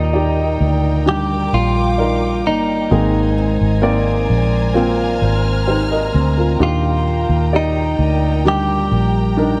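A tender, heartfelt pop ballad excerpt moves at an unhurried pace in a straight four, resting on a gentle progression of Ebmaj7, Abadd9 and a return to Ebmaj7. Up front, a bright, clean electric guitar recorded direct carries the picked, compressed melody in a narrow upper-middle range, dressed in lush chorus and delay. Beneath it, a natural-sounding baby grand piano plays the accompaniment, while a dark, full-bodied jumbo acoustic guitar adds fingerpicked arpeggios from the background, its finger squeaks audible. A studio string section sustains smooth-topped, bowed chords high above, expressive with vibrato and portamento. The muted fingered electric bass sits round, punchy and prominent at the bottom, and the whole ensemble plays together throughout the 9.6 seconds inside a moderate recital-hall reverb with a touch of small-room ambience.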